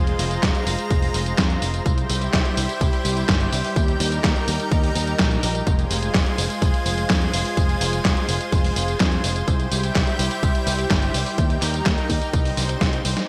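Bittersweet and danceable, this short italo disco excerpt in a straight 4/4 rides on a lush, detuned sawtooth pad with chorus sustaining chords over Fm, C and Eb, while a growly picked electric bass, an overdriven punchy electronic kick and an up-front 80s digital drum machine of handclaps, hi-hat, tambourine and gated-reverb snare drive it along in light reverb until a drum fill at 12.8 seconds.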